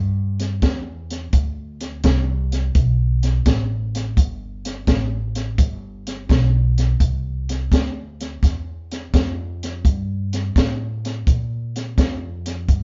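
A woody, thumpy upright bass, plucked on gut strings, opens this swaggering, soulful electric blues shuffle, and a compact cocktail drum kit joins at 0.4 seconds with hi-hat, a punchy kick and a high-tuned snare. Both parts are dark and up front, set in a strong swing; the drums sound smooth and warm, with a rolled-off top and a small-room character. The band plays live in one room with moderate studio reverb and a softened high end, in a clip cut from a longer piece.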